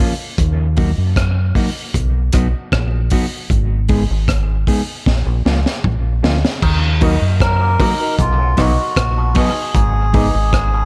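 A deep, round fingered electric bass sits up front in this heavy, spacious dub reggae excerpt, moving through Eb minor at 77 BPM in a straight 4/4 over a cycle of Ebm, B, Abm and Bbm. Beside it, a crunchy breakbeat drum kit with a punchy kick, high-tuned snare, rim clicks, toms and dark, rolled-off cymbals sounds saturated and gritty. A mellow, clean electric guitar plays accompaniment treated with dub echo. After a drum fill from 5.1 to 6.6 seconds, the arrangement opens into a new section. Here a hollow, nasal auto-wah clav adds overdriven arpeggios in the background, and a vintage concert grand piano drops dark stabs with audible action noise. A reedy, breathy melodica carries the melody from 7.4 seconds, both with dub echo, while very quiet, low-tuned bongos make a brief appearance, all framed by light reverb and a small room ambience.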